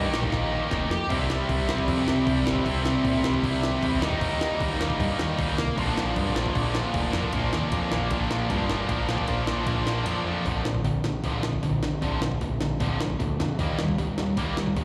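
Three picked electric guitars and a growling, overdriven bass open this punk rock excerpt together, and the drums follow at once with a fill at 0.3 seconds. The tempo is a straight, driving 154 BPM in Bb major, and the mood is rebellious and energetic. Up front, a tight distorted guitar with slapback echo carries the riff with a bright bite. A second overdriven guitar with the same echo sits in the background, alongside a double-tracked cranked stack guitar with a warm tone. The bass sounds both direct and amped. The sampler-style jungle kit is compressed, pitched up and gritty, with a thumpy kick, a medium-tuned snare, crash, ride and hi-hat, all overdriven and re-recorded in a small room. Kick and snare drop out briefly from 10.1 seconds, and the stack guitar stops at 10.4 seconds, while the other guitars, bass and drums push on. Everything is heard like a live gig through a venue's PA, set in the ambience of a recital hall.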